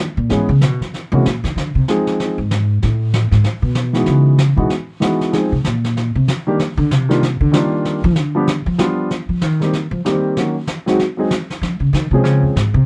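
Swinging and relaxed, this short slice of a jazz piano trio features a woody, plucked upright bass soloing up front throughout, a warm baby grand piano close by with short sustain carrying the melody from 0.3 seconds, and a fat, brushed snare drum sitting distant and roomy with a rolled-off top, all in a dry, intimate sound.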